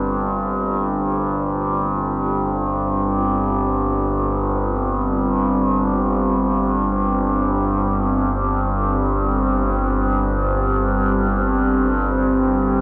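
A resonant drone in the low register sits up front from the first moment of this dark, unsettling ambient excerpt, its moving overtones sweeping through a blend of sawtooth and sine. Above it, a deep, moody pad fades in across the full 12.8 seconds, holding a sustained Gsus2 chord in free time, with detuned unison sawtooths and a sub octave giving it a thick, shadowed body. Both parts carry chorus and long releases, and a cavernous cathedral reverb with a 6.0-second decay soaks the dark production.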